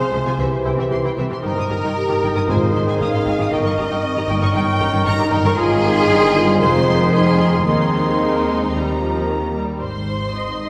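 A straight 4/4 pulse at 115 BPM drives this dramatic, urgent fast romantic movement for symphony orchestra in Ab major, cut from a longer piece. Two bowed violin sections carry the top: one sings the melody with smooth, even vibrato, while the other plays an expressive second line, joined by a pure, straight-toned concert flute and a clarinet. Beneath them, a focused viola section and a bassoon supply accompaniment, a dark French horn section holds soft-attack sustained chords, and a very quiet thumb-plucked harp rings out arpeggios. A lush cello section and a double bass section, entering at 0.1 seconds, anchor the bass, and timpani with calf heads sound an Ab between 2.5 and 3.2 seconds. The harmony moves from C through Eb/G, Ab, Eb7/G, Fm7 and Ab/Eb to Eb before settling on Ab. A reverberant concert hall with a 1.8-second decay places the listener further back in the room, so the violin sections feel distant.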